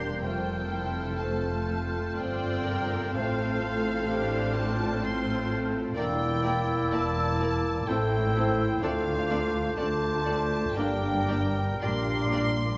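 A wet concert-hall reverb bathes this serene, romantic orchestral excerpt in F major, a slow 3/4 movement at 63 BPM with a rubato feel. A rich, focused chamber violin section carries the melody with vibrato, while a clear solo oboe, an airy small flute group with rolled-off highs, a distant clarinet and a lush background symphonic violin section weave second lines. Beneath them, a mellow bassoon, a smooth viola section, a very quiet ringing harp in arpeggios, a cello section with portamento, a distant double bass section, and a roomy French horn section sustaining chords from 0.2 seconds support harmonies that move from F through Em7b5 and Dm7 to Gm/Bb.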